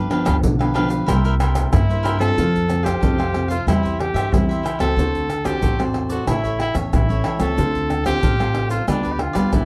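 A dry, close 1970s-style studio sound with light reverb frames this lively, festive samba and choro at 92 BPM in F major, where a bright, crisp, picked cavaquinho and a dark, full-bodied, fingerpicked nylon-string guitar with audible finger squeak provide accompaniment alongside a woody, thumpy pizzicato upright bass and an up-front percussion group of pandeiro, tamborim, egg shaker and deep surdo, before a clear, punchy trumpet with light vibrato and scooped notes joins at 1.7 s to carry a forceful, vintage, jazz-style melody.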